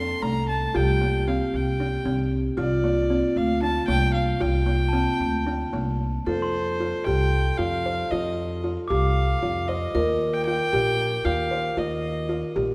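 In a straight 7/8 at 229 BPM in eighths, this hypnotic, urgent chamber excerpt sets a reedy, gut-string violin melody up front over a ringing, dry vibraphone second line, buzzing, woody kalimba arpeggios and an up-front pizzicato upright bass, while a bell-like glockenspiel adds background texture from 4.9 to 9.4 seconds, all within a moderate concert hall reverb as the harmony moves from Bbmaj7sus2/C to Fadd9 and Ebadd9.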